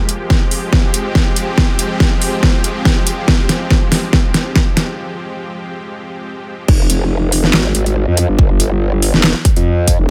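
Dry, up-front and punchy, this short cut of heavy wobble dubstep at 141 BPM in F minor rides a half-time, swung feel with an aggressive, chaotic mood. A lush, detuned supersaw pad holds sustained chords with sidechain pumping while an overdriven drum kit with a deep snare, metallic hats, handclaps and crash runs a fill alongside a punchy electronic kick, building up before a break at 5.0 seconds. At 6.7 seconds the drop lands as a growling, wobbling bass with formant-filtered saturation and chorus takes over the low end.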